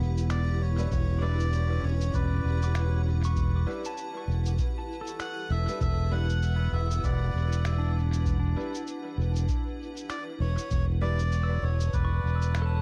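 This ambient dub passage, cut from a longer piece, feels deep and spacious as it rests on a single Em7 chord with a gentle 16th-note swing. A bright, cloudy, evolving granular pad holds sustained chords through its built-in reverb, while a clean pedal steel guitar, played with fingerpicks and slide, spins arpeggios with volume swells into tape echo. Up front, a fingered electric bass anchors the low end with a direct, amped tone, and a dry, analog electronic kick enters at 0.9 seconds. Muffled, pitched-down electronic cabasa and finger snaps trail off into dub echo, and a reedy, breathy melodica carries the melody through tape echo. In the background, a woody, vintage upright piano adds brilliant stabs from 0.8 to 11.2 seconds, and the whole mix is steeped in echo, tape saturation and vinyl crackle.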